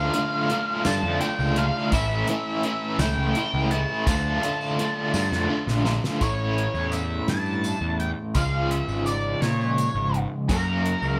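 Opening on a dark octave-fuzz lead guitar melody over a bright, double-tracked crunchy overdriven guitar riff with tremolo and a round, punchy fuzz picked electric bass, this mysterious, hypnotic psychedelic rock excerpt moves at 56 BPM in a straight 6/8, tuned to A4 = 435 Hz, while a dry 70s drum kit with a fat snare and tight kick plays a fill from 5.1 to 6.2 seconds before the chords turn from Dm and A toward C# and F#, a jingly, vintage tambourine sits in the background, and the band plays live in one room with moderate studio reverb.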